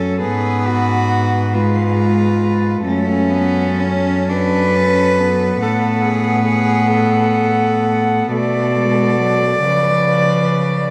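In a rubato 6/8 that sways on slow dotted-quarter pulses, this elegiac, melancholic classical fragment for four solo cellos is cut from a longer piece. A distant, floating cello carries the melody above a rich, up-front second line, while a clear, nasal cello plays close as accompaniment and a warm, up-front bass cello anchors the bottom; all four are bowed sul tasto with soft, pure attacks. A wet cathedral reverb places them in a vast, echoing space as the harmony drifts from G#m6 through F#m and Bm7 to a poised C#7b9.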